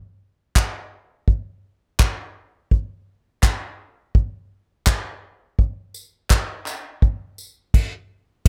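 A dry, closely miked recording captures a short, heartfelt and easy-going pop groove with a light swing. An airy, acoustic drum kit played with bundle sticks sits up front from 0.6 seconds, combining a punchy kick, crash cymbal, handclaps and tambourine. Behind it, a hollow, distant group handclap with a large-room sound joins at the same moment and drops out at 6.8 seconds.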